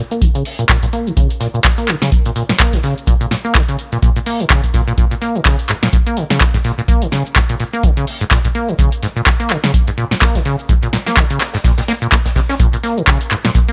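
Raw and gritty, this acid house excerpt in Bb minor moves at 126 BPM with a 57% swing on the sixteenths, built on a rubbery, resonant sawtooth bass riff that plucks with a fast attack and dark decay, colored by tube saturation, lush chorus and analog delay. Up front, an electronic kick thumps deep and tape-warm while an analog drum machine adds a punchy snare, metallic hats, handclaps and shaker, both re-recorded in a small room. A very quiet acoustic soul kit sits beneath with a dry, mid-forward snare and rolled-off top, all captured in a dry, gritty hardware sound with transformer saturation.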